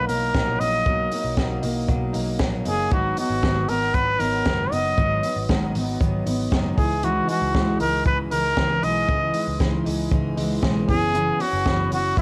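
Jangly indie pop in B major at 117 BPM, bright and youthful, with a breathy, whispered trumpet up front carrying an intimate vintage-style melody with soft attack and vibrato over a full-bodied jumbo steel-string acoustic guitar, picked with audible finger squeak. A twangy, slightly broken-up electric guitar through a small old amp plays arpeggios in the background with phaser and tape echo, while a round, foam-muted vintage electric bass plays the bass line and a compact cocktail drum kit with a punchy kick and high-tuned snare, entering at 0.1 seconds, sits up front in the mix. The chords move from Bmaj7 through G#m7 and C#madd9 to F#7sus4, and the whole cut sounds like a home cassette recording in a small room.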